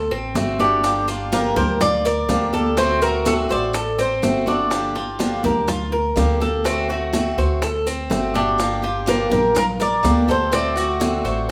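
A wet, roomy live-band sound carries this danceable, nostalgic Cuban son and guajira excerpt in G minor at 124 BPM, where a mellow, metallic tres plays a melody from 0.0 to 4.4 s and again from 8.4 s over a second, up-front tres's warm arpeggios, with woody pizzicato upright bass, a boxy swing-style picked acoustic guitar on old strings, and background percussion of bright, compressed congas, round low-tuned bongos and grainy maracas, all moving between Gm7 and D7.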